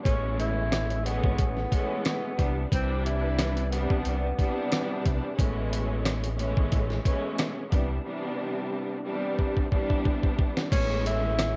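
A breathy, distant tenor saxophone carries the melody in an intimate jazz style with subtone, scooped notes and vibrato, playing until 5.3 seconds and returning at 10.7 seconds over a lush, bowed studio string section that alternates between Amaj9 and Cmaj9. The confident boom-bap groove comes from a gritty, compressed sampler-style drum kit with a thumpy kick and fat snare, re-recorded in a large room, which plays a fill from 9.4 seconds, alongside a deep, round fingered electric bass sitting up front. The saxophone and strings carry a cassette-tape haze, and digital ambience wraps this short excerpt in a home-recorded feel.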